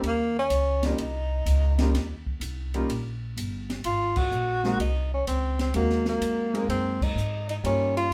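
Grand piano, pizzicato upright bass with a woody, growly tone, and a drum kit of dark cymbals, a high-tuned snare and a boomy kick open this warm, swinging small-group jazz fragment at 126 BPM in 4/4, joined at once by a breathy, mellow tenor saxophone carrying the melody up front with vibrato and scooped notes over an Eb7 to Ab7 change in a small, reverberant room heard from a little way back, with band accents at 4.1 and 6.9 seconds.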